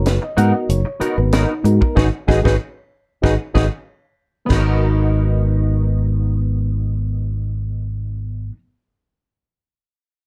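Electric jazz fusion at 94 BPM in G# minor, slick and driving, this short cut from a longer piece rests on a G#m9 chord, with a reedy, slightly out-of-tune electric piano through a phaser and an up-front fingered electric bass carrying the groove while a bright, compressed semi-hollow guitar adds clean picked stabs through ensemble chorus. A tight funk drum kit with a high-tuned snare, hi-hat, kick and china cymbal drives the first half, with a band accent from 2.0 seconds, and an electric piano fill and a drum fill both running to 4.5 seconds, after which the drums drop out at 4.7 seconds. The production is dark with light reverb.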